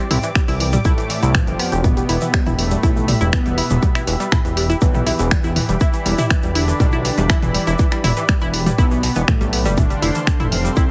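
Heavily compressed and radio-like in a digital space, this short cut from a longer melodic techno track moves at 121 BPM in E phrygian with a dark, hypnotic pull, its chords shifting from Csus2 to Em and finally F at 9.8 seconds. A fat, detuned sawtooth bass and a tight, driving arpeggiated synth with delay both pump with sidechain compression beneath the punchy, up-front electronic kick, while a house kit of finger snaps, toms and warm hats adds small-room ambience alongside a grainy acoustic tube shaker. Above, a lush, bright unison pad holds slow-attack chords with chorus, and from 0.8 seconds a smooth, mellow supersaw melody with delay sits in the background.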